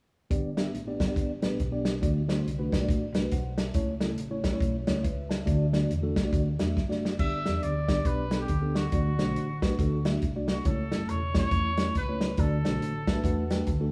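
A swung 4/4 groove drives this uptempo gospel piece, reverent and uplifting. A tight soul drum kit with dark cymbals and a medium-tuned snare sits up front beside a mellow, clean tine electric piano and a round, punchy hollow-body fingered electric bass. A drum fill at 6.8 seconds ushers in a vintage-toned trumpet at 7.2 seconds, carrying the melody with light vibrato and scooped notes, before an electric piano fill closes the passage at 12.8 seconds, all in a rough home demo mix with small room ambience and light reverb.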